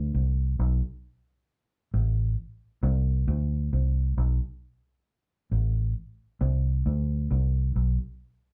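A straight 4/4 pulse at 67 BPM sets an unhurried reggae groove in this sunny, uplifting passage cut from a longer piece. A lone vintage electric bass, fingered and foam-muted, carries it from 0.0 to 8.0 seconds in a low register between A1 and D2, its dark, round, amped tone sitting up front. A moderate studio reverb gives the sense of a band playing live together in one room.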